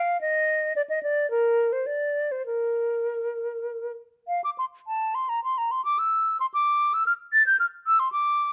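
Flowing in a rubato triple metre, this short, radiant cut from a longer baroque-style fantasia features an unaccompanied concert flute, pure and hollow with tongued notes and vibrato, sitting up front in close, detailed sound with light reverb as it ranges from Bb4 to A6 across 8.5 seconds.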